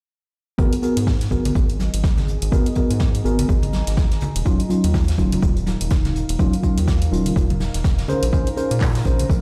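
A punchy, up-front electronic kick anchors this moody, late-night deep house excerpt with a swung 16th-note feel, joined by a rubbery, hollow square bass and mellow, clean tine electric piano stabs that both pump with sidechain, the piano trailed by tape echo, while a deep house kit's handclaps and dark hi-hats, close, ringing congas entering at 1.5 seconds, a faint brushed snare and hi-hat with a rolled-off top, and a deep, chorused ambient pad with built-in reverb arriving at 1.8 seconds fill out a dry mix played through a big sound system in a bare stone room.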